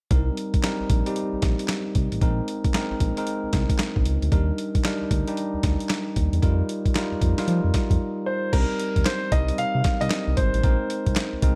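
The sampler-style drum kit stands out most, gritty and pitched down with a thumpy kick, a medium-tuned snare, hi-hat, handclaps and crash cymbal, all sitting up front with a tape-warm compressed edge. This is a flirty, bouncy new jack swing cut of R&B in 4/4, taken from a longer piece, with a swung sixteenth-note feel. A bell-like tine electric piano plays bright, clean accompaniment throughout, while a smooth, dark synth bass blends sawtooth and square waves with ring modulation for a sustained low end under chords moving from Cm7 through Bb9sus4, Ebmaj7 and F9sus4. After a short break at 8.0 seconds, a concert grand piano enters at 8.3 seconds with an intimate, polished melody, its long sustain and audible action noise giving it a close, present character. A digital ambience surrounds the mix.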